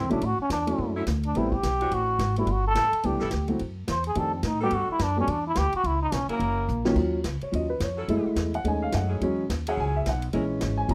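The sound is dry and close, in the manner of a 1970s studio session, with little reverb around the players. This sultry, dramatic big band swing excerpt opens with a muted trombone up front, its metal mute giving a bright, buzzy, thin and breathy tone with a smooth top, trailed by a slapback echo. Behind it, a tight saxophone section holds sustained chords with light vibrato and a soft attack, while a woody, thumpy pizzicato upright bass on steel strings sits up front. An upright piano with an open tone and short sustain accompanies from the start, and a natural-sounding drum kit swings along on ride, hi-hat, snare, crash and a boomy kick. A drum fill lands at 6.7 seconds, the trombone drops out, and the piano takes a solo from 7.0 seconds over a shifting run of rich extended chords.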